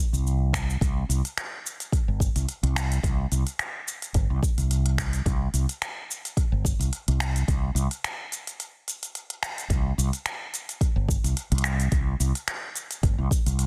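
A mellow fretless electric bass and an organic electronic drum kit start together at the outset of this short, hypnotic, earthy organic downtempo excerpt, with a deep electronic kick joining at 0.5 seconds. The kit's cabasa, finger snaps and smooth hi-hats sit on a light 16th-note swing, tape-softened and re-recorded in a large room, with soft clipping roughening the snare. The bass stays low and round, dark and punchy, sitting up front beside the kick, and its sidechain pumping gives the groove a breathing pulse. A break arrives at 8.6 seconds before the music moves into a new section at 9.7 seconds, running to the end at 13.7 seconds. The sound is dry, with little reverb, and the master is dense and heavily limited.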